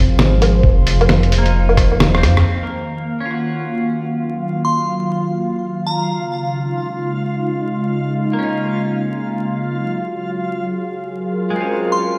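A dark, rumbling detuned saw bass and a muffled, pitched-down lo-fi drum kit with a fat snare, rim clicks and woodblock sit up front in this melancholic, rainy future garage excerpt at 132 BPM with a swung feel, both dropping out after a drum fill and band accent around 2.3 seconds, while a thumpy electronic kick thuds briefly beneath them. An airy, breathy pad holds sustained chords throughout, moving from Fm7 to Ebm11, Dbadd9 and Gb69. A twangy twelve-string electric guitar with tape echo, a reversed, granular swelling texture entering at 3.5 seconds, and a crystalline FM bell melody with phaser and digital delay fill the rest, all set in a lush hall reverb with stone-room ambience and vinyl crackle.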